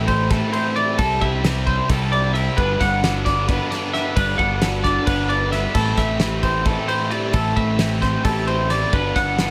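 A light reverb and a pumping studio room give this short clip of math rock and midwest emo its space, with a bright, wistful mood. It moves in a straight 7/8 at 264 BPM counted in eighths, in G major and tuned to A4 = 436 Hz, cycling through Am7, C6 and Gmaj7. Up front, a twangy electric guitar plays clean, picked arpeggios high in its range through an analog chorus, while a compressed twelve-string electric guitar adds a bright, twangy, phased accompaniment. A double-tracked overdriven electric guitar plays a riff underneath, and a growling fingered bass, overdriven and recorded both direct and amped, holds the low end. A loose indie drum kit joins at 0.1 s with a fat snare, punchy kick and dark crash and ride cymbals.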